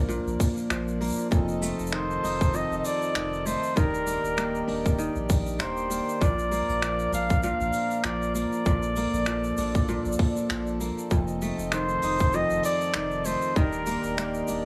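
A swung 4/4 groove at 98 BPM, driven by a tight, overdriven electronic kick up front and a distant brushed kit with finger snaps, hi-hat and shaker, carries this hopeful, playful folktronica excerpt, where a flugelhorn with light vibrato sings a delayed melody over crisp, ringing kora arpeggios, reedy harmonium chords and a round sine sub bass moving through Bb, F7 and Ebmaj7 in a small, lightly reverberant room.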